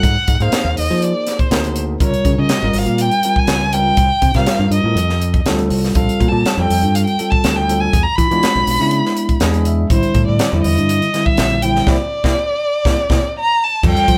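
Funky and bright, this electric jazz fusion excerpt moves at 122 BPM in a straight 4/4, cut from a longer piece and played by a band together in one room with moderate studio reverb. A warm, up-front bowed violin carries the melody with expressive vibrato and portamento and a smooth top, while a bell-like, clean tine electric piano supplies the accompaniment and adds fills from 9.2 to 9.9 seconds and again toward the close. Underneath, a punchy, direct fingered electric bass holds the low end, and a crisp, polished acoustic drum kit with a high-tuned snare, punchy kick, hi-hat and crash cymbal sits up front in an airy studio room. The harmony travels through rich colours such as Abadd9, Dbmaj7#11, F9, E7b9 and Am7 before settling on C9, where the whole band hits accents from 11.9 seconds. A drum fill arrives at 13.6 seconds, and a very quiet, dry conga with soft hands slips in just at the end.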